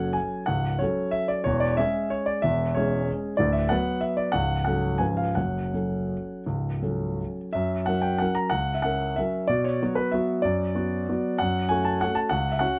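Bittersweet and elegant, this short cut from a longer classical piano waltz in F# minor moves in 3/4 with a rubato feel, its tempo drifting between 157 and 205 BPM. A solo grand piano carries the whole passage, sounding intimate and up front, with long sustain and audible action noise caught by close, detailed microphones under light reverb. Around 7.5 seconds the harmony turns from minor colours toward an F#7 chord, then passes through B minor before settling back on F# minor near 11.4 seconds.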